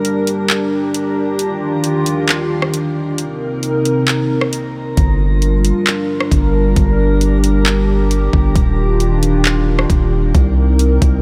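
Set in a light reverb, this ethereal, spacious cloud-rap excerpt in G minor moves at 134 BPM with a half-time feel, built on a dark, detuned analog pad whose chorused, sidechain-pumped chords cycle through Gm, Ebmaj9 and Cm7. An electronic R&B kit of knocking kick, warm, tape-warm hi-hats, handclaps and rim clicks sits up front beside the pad throughout. At 5.0 s a deep, mellow 808-style sine bass arrives with long, decaying notes as the chords shift to Gm7.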